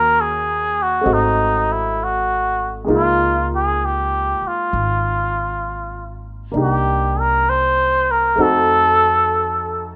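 Intimate and smoky, this 10-second fragment of a slow swung jazz ballad at 65 BPM puts a veiled, cup-muted trumpet up front, singing the melody with vibrato and scooped notes over polished, short-sustained grand piano chords and a woody, dark pizzicato upright bass, all in a rough home demo mix with light reverb and small-room ambience as the harmony moves from Ebm7 through Db69 to F7b9.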